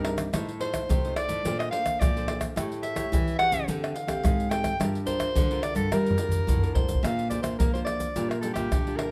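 This samba and choro piece, cut from a longer performance, has a sunny, joyful mood in a straight 4/4. A warm soprano saxophone with a smooth top carries the melody up front as a jazz-style solo, while a bright, fingerpicked classical nylon-string guitar with fresh strings and audible finger squeak plays the accompaniment. Beneath them, a second fingerpicked nylon-string guitar sits in the background with a full-bodied, classical tone, handling the bass line. Pandeiro, tamborim, tube shaker and a deep surdo are played with soft hands and sound close, dry and up front. A drum fill begins at 5.9 seconds and leads into a new section at 7.0 seconds, and a moderate large studio reverb gives the ensemble a sense of space.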